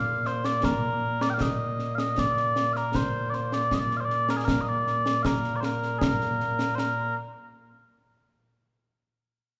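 Ceremonial and proud, this short cut from a longer piece of Scottish pipe music moves at 78 BPM in a straight 2/4, set in Bb major. Mellow small bagpipes carry the melody from the very start, their sweet, continuous tone sitting up front as a solo voice that ranges from Bb2 up to G5. At 0.3 seconds a concert snare drum and concert bass drum join in, played close and up front with dark cymbals adding an acoustic, stately weight beneath the pipes. Both parts continue together until 7.1 seconds. The whole performance sits in the wet, lingering reverb of a church or concert hall, giving the pipes and drums a spacious, resonant sense of occasion.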